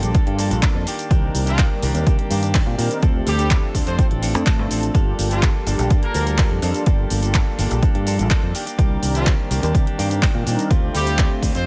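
A straight groove drives this nostalgic, groovy filtered disco house excerpt, with an overdriven, up-front electronic kick and a punchy analog drum machine of cabasa, handclaps and hi-hat, its hats and percussion pumping against the sidechain, beside a growly fingered electric bass that pumps along too. A mellow, detuned sawtooth synth brass with chorus, phaser and a filter sweep holds dark, round chords, while a clean, scooped electric guitar riff recorded direct shares its gritty 12-bit sampler texture. From 1.5 seconds a brilliant horn section carries the melody in octave doubling with vibrato and delay, over a dry sound and minor ninth and seventh chords.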